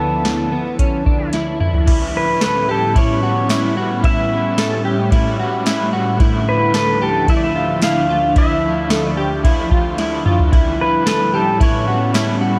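An up-front, overdriven vintage rhythm box, with a deep kick, crisp snare and metallic hats, drives this blissful, dreamy dream pop excerpt at 111 BPM in A mixolydian, rolling a fill into 1.9 s and another at 10.0 s. Over it, a fingerpicked pedal steel guitar sings a compressed slide melody with volume swells and tape echo, while a dark clean electric guitar picks chorused, echoing arpeggios and an ethereal, detuned sawtooth pad holds slow-blooming chords between Dmadd9 and A9. At 1.9 s a bright, raw garage guitar joins low in the mix with overdrive, tremolo and lush chorus, all set in light reverb and digital ambience.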